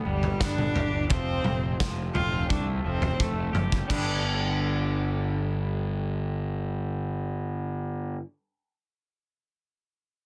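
Quiet-loud alternative rock with a bittersweet, restless mood, cut from a longer piece: a distant, bowed cello with vibrato carries the melody through an analog delay, while twangy, clean electric guitar arpeggios shimmer in lush chorus over a punchy, fuzz-overdriven picked bass up front. A loose indie drum kit with a tight kick, a medium-tuned snare and a pumping small-room sound plays a fill from 3.2 to 3.9 seconds and drops out at 4.1 seconds, while the harmony moves from G to Fadd9 and returns to G. The whole is finished with light reverb and a dense, heavily limited modern master.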